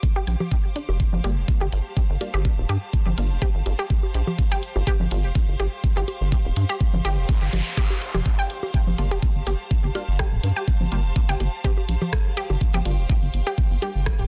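A rubbery, hollow square-wave bass sits up front with sidechain pumping, driving this hypnotic, quirky minimal techno excerpt at 124 BPM with a light 16th-note swing. A knocking electronic kick, a garage kit with metallic hats, rim clicks and a soft-clipped snare, and dry bongos and congas with dub echo support a juicy, squelchy blip pluck riff carrying chorus and digital delay. Behind them, a bright, biting string section fades in from a distance, a muted, deep dub chord stab with phaser drifts in the background from 1.2 to 5.2 seconds and again from 9.0, and a noise sweep passes through from 7.2 to 8.7 seconds, all in a dry, dense, heavily limited mix.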